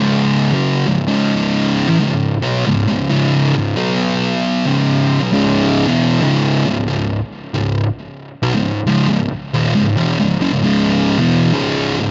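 A thick, double-tracked fuzz guitar sits up front and plays by itself through this heavy, hypnotic metal fragment, its picked, distorted low notes carrying a swung groove and a tape-echo tail as it moves from C#5 to B5 power chords before settling on C# minor at 5.3 seconds, all within a dark, warm mix under light reverb.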